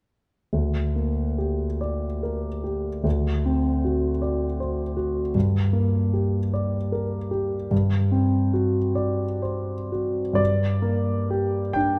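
The recording places a concert grand piano up front in a recital hall, its natural, intimate tone wrapped in a moderate reverb that lingers for about 1.8 seconds, with the noise of the piano's action clearly audible. This is a romantic classical nocturne for solo piano in G minor, a brief fragment cut from a longer piece, moving in a slow, rubato 6/8 at roughly 40 to 55 beats per minute counted in dotted quarters. The piano plays alone from 0.5 to 12.0 seconds, spanning D2 up to G5, and its deep bass gives the lower register real weight. The harmony sways between G minor and D7 chords, settling on G minor again at 10.4 seconds as a new section begins. The mood is yearning and melancholic, the freely flowing pulse lending each phrase a hesitant, heartfelt quality.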